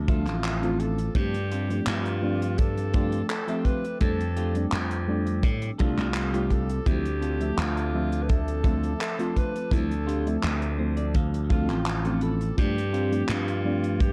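Vaporwave in D minor at 84 BPM, this hazy, woozy 14-second cut from a longer piece moves through Dm7, G7sus4 and F69 chords in a straight 4/4. A mellow FM electric piano supplies round, warbling accompaniment with a subtle chorus, while a warbly tape-like pad sits in the background holding nostalgic, lo-fi sustained chords with slow attack and built-in reverb. Up front, a glassy slap bass growls with tube saturation beside a punchy acoustic kick drum, and a crisp fusion kit adds handclaps and hi-hat with an airy, polished studio sound. A bright alto saxophone carries the melody with light vibrato and tape echo, and a clean, picked electric guitar plays a riff in the background through lush chorus, adding a fill from 10.4 to 12.6 seconds. The dark production is wrapped in small room ambience and cassette tape character.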